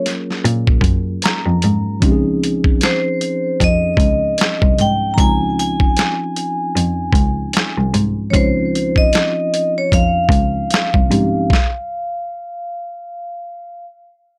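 A metallic, ringing vibraphone with slow motor vibrato carries the melody up front in this smooth, soulful neo-soul R&B excerpt at 76 BPM with a swung 16th-note feel, over a mellow tine electric piano that adds a fill at 0.8 s, a gritty, compressed boom bap sampler-style drum kit with a thumpy kick, and a rich, earthy bowed cello bass with light vibrato, moving from Gbmaj9 to Dbmaj9 in a dry room until the other parts drop out around 11.5 s and the vibraphone continues alone.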